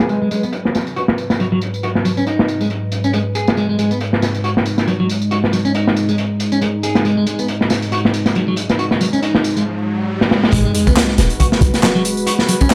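A swung breakbeat groove at 138 BPM drives this gritty, swaggering excerpt in G# minor, with a raw garage drum kit up front, its boomy kick, saturated snare and rolled-off hats sounding in a small, pumping room, while layered, overdriven electronic tambourine and handclaps sit lower in the mix. A clean, picked electric guitar riff carries tube saturation, 12-bit sampler grit and tape echo over a warbling, nostalgic pad that holds a G#m7 chord through chorus, reverb and sidechain pumping, its filter sweeping until a riser and drum fill lead into the drop at 10.5 seconds. There a deep, mellow 808-style bass enters briefly alongside a background sub drop and impact, all under light reverb and vinyl crackle.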